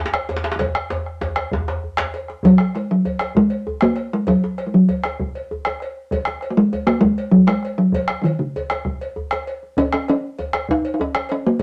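A festive, driving West African drum ensemble in 12/8 at 131 BPM opens with a round, close bombo, a metallic, saturated cowbell and two tight, cracking djembes played with soft hands, one of them compressed and up front, while a drum fill runs from 0.6 to 2.4 seconds. That forward djembe drops out at 2.1 seconds, and at 2.4 seconds a resonant talking drum takes the melody, ranging from C#3 to D#4 in F# major pentatonic and sitting prominently above the others. The ensemble plays in a studio room with a short reverb, and this portion is cut from a longer piece.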